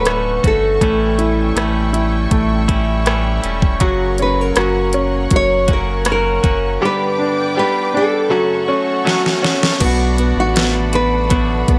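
This is a melancholic, heartbroken pop ballad in B minor at 80 BPM in a straight 4/4, cut from a longer piece. A fingerpicked nylon-string guitar carries the melody with a classical tone, audible finger squeak and a touch of digital delay, over a brilliant baby grand piano accompaniment. A direct-recorded clean electric guitar adds compressed, twangy picked arpeggios, while a distant, lush symphonic string section holds bowed chords with smooth vibrato high above. Underneath, a round sine sub bass sits up front with a fast attack, and a layered electronic drum kit enters at 0.1 seconds with a knocking kick, deep snare, rim click, hi-hat and crash, overdriven and re-recorded in a small room. The harmony moves from Dmaj7 through A7, F#, G and F#m, and a drum fill from 9.1 seconds leads into a new section on Bm7 at 9.8 seconds, all set in a light reverb.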